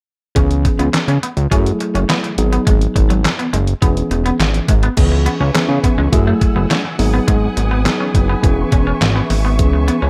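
An early-eighties boogie funk groove at 104 BPM in C# minor opens with a fat, saturated analog bass sitting up front, a thumpy, sampler-style 8-bit drum machine with gated reverb on its kick, snare, hi-hat, handclaps and crash, a worn, slightly out-of-tune tine electric piano with overdrive comping through C#m7, F#m9, G#m7 and E6, and a twangy, slightly broken-up electric guitar riff bathed in lush chorus. At 5.0 seconds a warm studio string section adds sustained bowed chords with vibrato and portamento, while very quiet, high-tuned congas bring a close, damped tone. The dry, danceable mix carries a late-night mood, and this excerpt is cut from a longer piece.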